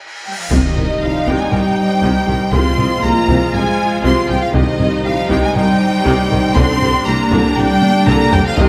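Brooding and relentless, this cinematic hybrid orchestral and electronic film score excerpt in C minor at 119 BPM opens with a huge, dark cymbal swell and impact before taiko ensemble drums with heavy sticks drive beneath lush bowed strings (a smooth symphonic violin melody, an intense chamber violin second line, distant violas, focused cellos and background double basses), a mellow, distant French horn section, a very quiet dark tuba and a shimmering retro pulse-width pad with chorus, all bathed in a scoring stage reverb, with a drum fill at 7.8 seconds.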